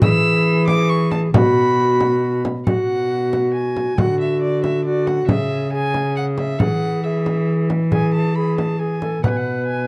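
Light reverb and a warm production frame this short portion of a longer piece, a renaissance-style consort dance in straight triple metre, solemn and rustic in mood. A single bowed violin carries the melody with a reedy, gut-string, period-style tone and light vibrato, sitting a little lower in the mix than the other parts. Beneath it, a bright tenor recorder plays a second line with an airy, woody voice, a crisp chiff on its attacks, vibrato and lifted highs. A lone bowed cello holds the bass up front, its dark, period-style sound smooth on top, while a small acoustic frame drum, close and dry and struck with hard hands, sits equally forward until it stops at 9.4 seconds. The harmony moves through E, B5, D and C#m before returning to E and B5.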